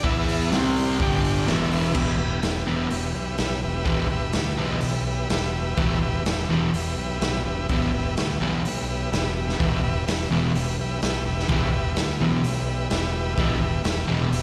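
A straight 4/4 pulse at 126 BPM drives this menacing, swaggering garage rock cut in E minor, where a double-tracked, up-front fuzz guitar riff with slapback echo rides over an overdriven, punchy fingered bass, a raw drum kit with a saturated, gritty snare and kick in a pumping small room, and a buzzy vintage combo organ holding sustained chords with heavy vibrato, all heard as a live gig through the venue's PA with recital-hall reverb, the chords moving from E5, C5, G5 and E5 into E minor at 2.0 seconds.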